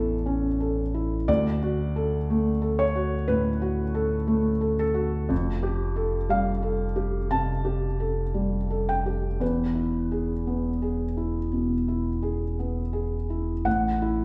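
Loosely pulsed and rubato, with uneven beats over a 4/4 frame, this hopeful, intimate neoclassical fragment is cut from a longer piece. A soft, felt-muted upright piano sits up front with a mellow, natural tone, accompanying over a deep, sustained sub bass with octave whose sine-and-triangle body speaks with a fast attack. The harmony drifts from A through D, Fadd9 and E before settling on A5 at 13.7 seconds, all held in a reverberant recital hall heard from further back in the room.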